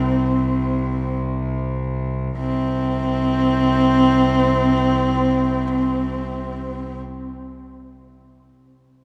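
In free time that slows over the first 2.4 seconds before a new passage begins, this windswept, solemn fragment of Mongolian folk music, tuned to A4 = 438 Hz, features a single husky, focused horsehead fiddle carrying the melody with vibrato and portamento over a smooth, even bowed cello drone, both held in a long cathedral reverb that suggests a church or concert hall.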